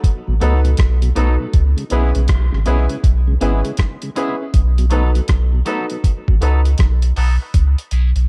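Hypnotic and spacious, this dub reggae fragment moves at 80 BPM in 4/4 with swung sixteenths, cycling between B7 and C#m7 over a gritty, compressed sampler-style drum kit of thumpy kick, hi-hat and rim click, sitting up front beside a deep, round sine sub bass. Around them, a twangy, clean electric guitar with warbly pitch drift, woody upright piano stabs and a dark tonewheel organ with key click and slow rotary speaker in the background all trail tape echo through a high-pass filter. The sound is dry and close, and a filter sweep runs from 4.5 seconds to the end.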